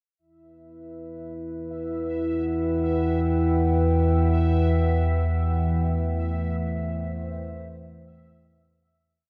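Dark and cavernous, this short dark ambient drone piece drifts in free time in E minor, a whole piece of about nine seconds. A moody analog pad of detuned square and sawtooth waves with a sub octave and a moving notch opens at 0.2 seconds, holding slowly shifting chords from Emadd9 to Am/E at 4.7 seconds, its slow attack and long release softened by chorus. A bubbling texture enters at 0.8 seconds, a held high note with random filter steps and a resonant, detuned edge, sitting well back in the mix under chorus and reverb. From 2.2 seconds a deep, ominous drone rumbles beneath, its wave-folded triangle and sawtooth tones thickened by lush chorus and its own reverb. The production is dark and warm, bathed in a huge wet reverb that lends the space its cavernous depth.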